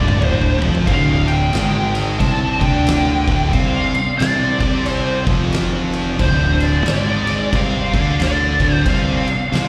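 Swung eighths at 90 BPM in 4/4 drive this hypnotic, heavy stoner and doom metal excerpt on a D minor chord, tuned to A4 = 438 Hz, as an oversized, low-tuned acoustic drum kit with a fat snare and boomy kick opens with a fill, a growly, overdriven fingered electric bass sits up front, a bright, scooped, double-tracked high-gain guitar with slapback echo and two very quiet thick fuzz guitars, one warm and one dark, churn out the riff, and a shadowy, distorted fuzz lead guitar carries the melody through wah, slapback echo and digital delay, captured at a live gig through the venue's PA with small-room ambience and recital-hall reverb.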